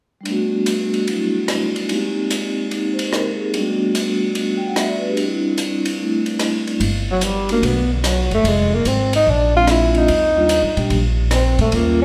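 Small-group swing-and-bop jazz at 147 BPM with a warm, relaxed mood, this excerpt from a longer piece opens on ringing, soft-mallet vibraphone with medium motor vibrato and a dark, rolled-off cocktail drum kit of hi-hat, ride cymbal and rim click, before woody pizzicato upright bass enters at 6.8 seconds and a breathy, subtoned tenor saxophone takes the solo melody at 7.1 seconds with vibrato and scooped notes, all carried by a moderate recital-hall reverb over chords moving from Gmaj7 through Abmaj9 and D7sus4 to Fm, Bb7 and Ebmaj7.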